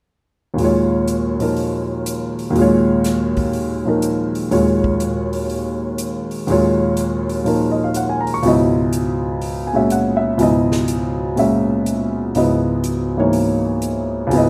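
A concert grand piano opens this modal jazz passage at 0.5 s, sitting up front with an intimate, natural tone, deep bass and audible action noise under a plate reverb. A swinging big-band drum kit joins at 0.6 s, its hi-hat, punchy kick and medium-tuned snare carrying an airy, polished hall character, though it sits well behind the piano in the balance. At 122 BPM in 4/4 with a firm swing on the eighth notes, the feel is spiritual and intense. The piano's accompaniment spans a broad range, resting on an Ebm11 chord before moving to Dbm11 at 8.4 s. The whole passage is a single section cut from a longer piece, set in a wet studio ambience with the rough edges of a home demo mix.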